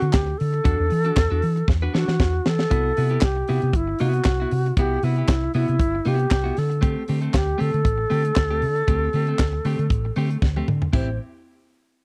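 Airy, vibrato-laden alto flute leads from the start over a round, dark hollow-body bass, a compressed clean electric guitar touched with spring reverb, and a tight funk kit with a high-tuned snare, handclaps and drum fills at 1.7 and 10.4 seconds, giving this dry, close 1970s-style disco excerpt at 117 BPM a danceable, glamorous feel as the chords move from Dsus4 to Am7.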